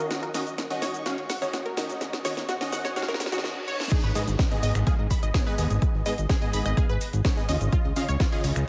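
Lush detuned unison pluck arpeggios, mellow supersaw stabs, a dreamy reversed swelling texture and a tape-warm house kit with a cracking snare open this emotional, expansive progressive house cut at 126 BPM in G# dorian, building through drum fills, a filter sweep on the pluck, very quiet risers and a reverse cymbal toward the drop at 3.9 seconds. There an overdriven punchy electronic kick and a fat, detuned analog bass with ring modulation hit up front beneath the sidechain-pumping synths and a very quiet downlifter, their digital delays ringing through a moderate concert hall reverb over chords moving from D#m7 to G#m and C#add9.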